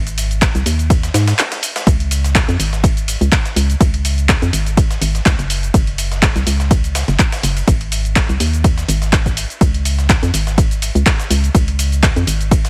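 Uplifting and joyful, this short piano house excerpt rides a gently swung 4/4 groove. Up front, an organ-like FM bass sounds hollow and dark, with a fast attack and decaying notes, thickened by tube saturation and pumping through sidechain compression. An analog drum machine supplying cabasa, handclaps and hi-hat starts almost at once, and a punchy, tape-tinged electronic kick anchors the beat from 0.4 seconds. Lower in the mix, a dusty soul sampler-style kit adds gritty, overdriven ride cymbal and a medium-tuned snare, both thinned by high-pass filtering. A brief break arrives at 1.4 seconds, and the dry, heavily compressed radio-style sound keeps the whole groove dense and forward.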